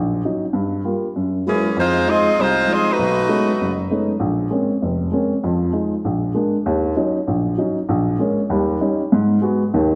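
Bathed in the lush reverb of a scoring stage, this sultry, swinging jazz fragment rests on a dark, woody upright piano with long sustain playing accompaniment throughout, while a tight saxophone section with light vibrato carries the melody up front from 1.5 to 3.8 seconds, before the harmony moves into a new section at 6.7 seconds.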